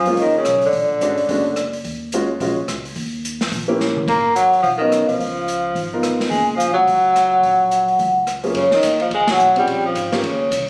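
This small-group swing and bop jazz passage, cut from a longer piece, races along at 214 BPM in F# major with a playful yet sophisticated air. A soft-mallet vibraphone carries the melody with a mellow, ringing, metallic tone and fast motor vibrato, while a warm, vintage-toned tenor saxophone sits up front on a lower second line with light vibrato. The two drop out briefly and return just after a drum fill at 3.8 seconds. Beneath them, a woody pizzicato upright bass runs throughout. A clear, smooth upright piano with short sustain comps up front, pausing once before rejoining. The open jazz kit, with its dark cymbals, punchy kick and medium-tuned snare, lends a small-room feel, and a band accent lands at 9.3 seconds amid a moderate studio reverb on a phone-captured recording made in the room.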